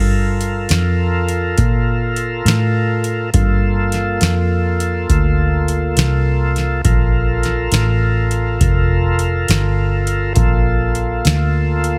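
Smoky and soulful, this slow blues excerpt in 12/8 at 68 BPM sits in G minor on a single Gm9 chord, with a gritty, overdriven tonewheel organ holding thick sustained chords through a slow rotary speaker, a round, foam-muted vintage fingered electric bass playing up front, and a booming analog drum machine entering at 0.4 seconds with a deep kick, crisp snare and metallic hi-hats, all set in a digital ambience.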